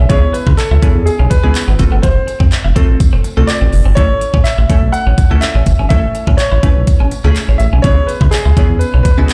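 A straight, driving pulse propels this upbeat, euphoric dance-pop excerpt. An up-front pop kit of knocking kick, crisp hi-hat and handclaps sits with a deep, round analog bass carrying sidechain pumping, while a faint, jingly tambourine enters at 0.3 seconds. A clear, polished baby grand piano carries the melody through tape echo over a bright, clean twelve-string electric guitar riff bathed in lush chorus and a glassy, crystalline wavetable pluck that also pumps, moving through C#m7, F and A, all heard as if played on a big sound system in a bare room with large studio reverb.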